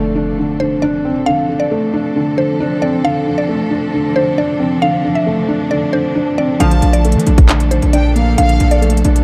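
A half-time trap pulse at 135 BPM in 4/4 frames this eerie, dark hip hop excerpt in D minor, moving from Dm7 to Bbmaj7 at 6.6 seconds. It opens on an electronic impact as a woody, round synth pluck with chorus and phaser carries the melody over a felt-muted upright piano, whose soft, intimate tone sits up front with audible action noise. Beneath them a clear, focused studio string section holds bowed chords with vibrato. At 6.6 seconds the trap kit arrives with a hard-clipped kick, crisp hats and handclaps, joined by a heavy, saturated 808-style bass that hits aggressively and decays. Brass stabs sound briefly in the background at that point, while a chamber violin section adds a soft, sul tasto second line through tape echo. The production is dark and lightly reverberant.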